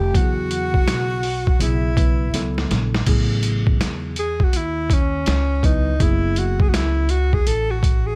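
A breathy, intimate alto saxophone with a subtone and a short slapback echo carries the melody and then takes a solo from 3.1 s in this cool jazz-hop excerpt, with a metallic jazz flute adding a soft second line in the background until 2.7 s, a worn, slightly out-of-tune tine electric piano comping mellow extended chords, a woody, dark pizzicato upright bass underneath, and a gritty, compressed, pitched-down boom bap drum kit with a thumpy kick, swung hi-hats and a fill at 2.3 s, all set close and dry under a bed of vinyl crackle.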